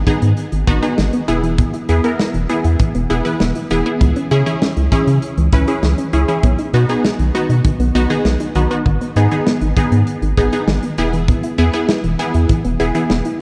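Wistful and nostalgic, this short synth-pop excerpt moves at a steady 99 BPM in a straight 4/4, cycling through G#m, E, C#m and B. A soft round pluck with a gentle, dark tone plays arpeggios through chorus and tape echo, while a brighter, detuned unison pluck sits up front with lush accompaniment, coloured by a phaser and a filter sweep. Underneath, a round analog bass adds a deep, sustained low end built from square, sine and triangle waves with a wave-folded edge. A polished modern studio drum kit keeps time with hi-hat, a tight kick and a medium-tuned snare in an airy room sound. The whole recording sits in a moderate concert hall reverb and carries the worn, warbling pitch drift of old cassette tape, which deepens its faded, memory-like feel.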